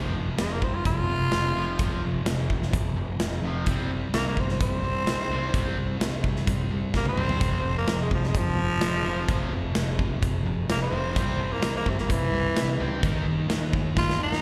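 This gritty, brooding classic rock excerpt in F minor opens with two distorted electric guitars playing a riff in the background. One is bright and scooped, the other sludgy with overdrive and slapback echo. Beneath them, a growly fuzz-toned fingered bass drives the low end, and a very quiet vintage string machine holds lush, slow-attack sustained chords. At 0.4 seconds a raspy tenor saxophone takes an up-front solo with vibrato and slapback echo, while a big, punchy rock drum kit enters on hi-hat, kick, snare and toms. The drums play fills at 6.9 and 14.0 seconds as the straight 4/4 groove at 128 BPM moves through F minor, C and E-flat chords. The whole performance sounds like a live gig heard through the venue's PA, with a recital hall's reverb around it.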